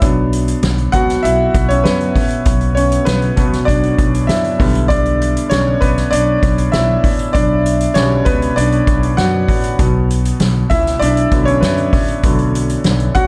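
This piano-driven pop piece in B minor carries a bittersweet, dramatic mood at a steady 98 BPM in straight 4/4, tuned slightly sharp to A4 = 443 Hz. A clear grand piano sits up front and takes a solo across the whole 13.3 seconds, its smooth, vintage tone ringing with long sustain. Beneath it, a pizzicato upright bass on gut strings gives a woody, dark, thumpy low end. A soft-mallet acoustic drum kit plays hi-hat, a punchy kick and a medium-tuned snare in a roomy studio space. The harmony moves from Bm to G at 4.6 seconds and returns to Bm at 9.8 seconds. Light reverb and small room ambience surround this short cut from a longer piece.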